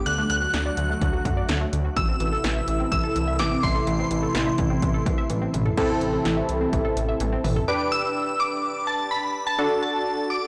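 A shimmering, dreamy FM bell with a halo leads this upbeat, wistful synth-pop excerpt, carried over a swirling phased analog pad, round chorused pluck arpeggios, a smooth detuned synth bass and a punchy overdriven analog drum machine with fills; the pad, pluck, bass and drums drop out around 7.7 s, and the warm analog keys that enter up front at 5.8 s carry on beneath the bell in a blown-out, overdriven mix with a short, wet reverb.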